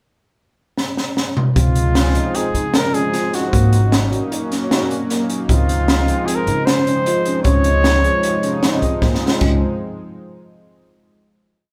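Progressive instrumental band music in 5/4 at 153 BPM in Db major, bright and intricate, played live in one room with a moderate large-studio reverb; an open jazz drum kit with dark cymbals, a high-tuned snare and a boomy kick opens with a fill at 0.8 seconds and stays up front in a straight 5/4 groove. From 1.6 seconds a mellow trumpet carries a jazz-style solo of arch-shaped motifs with light vibrato and scooped notes, over a woody, pizzicato upright bass locked to the kick drum, a chorused analog pad of sustained, rootless voicings and syncopated chord stabs, and a clean tine electric piano ostinato sitting in the background. The harmony moves from Dbmaj7 through Ab9sus4 to Dbmaj9, and after a second drum fill the piece settles on a final chord at 9.4 seconds.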